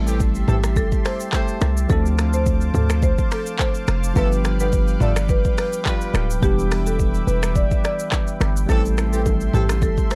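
Afrobeats at 106 BPM in A minor, this hypnotic, smooth cut from a longer piece rides a gently swung sixteenth-note groove through Am7, Dm7, G7 and Em7 before returning to Am7. An electronic afro-pop drum kit sits up front with a deep kick, dark hats, finger snaps, handclaps, rim clicks, shaker and toms, while a hard-hitting 808-style bass adds punchy, heavy sine tones with a noise layer and fast, decaying attacks. A bell-like, bright tine electric piano supplies clean accompaniment with plate reverb, and a lush unison pad holds thick, detuned sawtooth and square-wave chords with slow attack, long release and chorus. The melody comes from a woody marimba played with medium mallets on padauk bars, smooth and dark with delay and plate reverb. A warm horn section with light vibrato carries a distant, roomy second line. Bright, vintage-toned congas and bongos, played with soft hands and very quiet, appear only from 8.7 s to 10.0 s, all within a dark production with light reverb.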